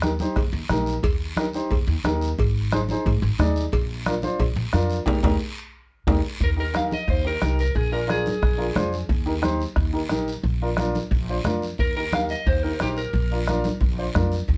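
An excerpt of sunny, danceable cumbia in Eb major at 179 BPM opens with a dark, mellow upright piano up front, woody pizzicato upright bass, a soft-beaten bombo, ringing close congas and a raspy guiro, while ringing metal-shell cowbell and timbales play from 0.4 s to 6.2 s, through a drum fill and band accent starting around 5.1 s, after which a slightly broken-up, picked electric guitar with spring reverb carries the melody at 6.4 s and again from 11.8 s over a light room with a faint mains hum.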